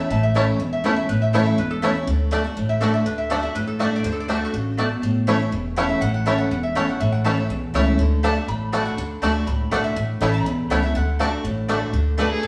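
Heard through a stone room's reverb in a lively, driving live bluegrass excerpt, a metallic, nasal lap resonator guitar plays a steel-bar slide solo until 11.9 seconds over a twangy fingerpicked banjo melody, a bright, full-bodied acoustic guitar up front, double-strung mandolin stabs and a thumpy, dark upright bass, before a rich, smoothly bowed fiddle enters at 12.2 seconds.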